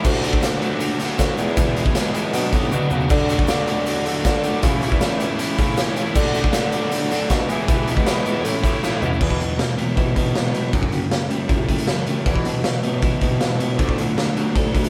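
A straight 4/4 pulse from a raw, saturated garage drum kit sits up front in a pumping room sound, its punchy kick and gritty hits driving this wistful yet upbeat indie rock excerpt, with fills at 2.7 and 8.8 seconds. Two picked overdriven electric guitars, one dark and biting and the other crunchy, play riffs over chords moving through D, E, Bm and A, while a clear, classical-style bassoon carries the bass line and a grainy, very quiet egg shaker sits in the background until 9.2 seconds. From there the music shifts to a second section built on Esus2, F#m7 and D6, captured as a band playing live in one room with moderate studio ambience.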